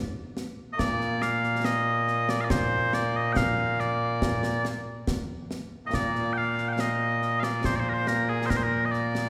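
Concert snare and bass drum with bright cymbals open this proud, stirring fragment of Scottish pipe music in 3/4, and a mellow, sweet set of small bagpipes soon enters, carrying a continuous, vibrato-laden solo melody up front, all bathed in a lush hall reverb.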